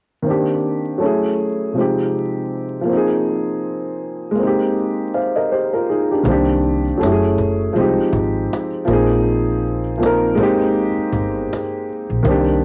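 A hazy home cassette recording with vinyl crackle, light reverb and a dulled top end frames this melancholic lo-fi hip hop fragment at 80 BPM, swung gently on the sixteenths. A dark, mellow upright piano with a vintage tape tint sits up front from 0.2 seconds, intimate and smooth with audible action noise, moving through Cm9, F#m9, Fm9, Bb7sus4 and Abmaj9. At 6.2 seconds a soft-handed cajon with faint snares enters in a small room, and from 6.3 seconds a growly pizzicato upright bass on steel strings adds a woody low end beneath the repeated progression.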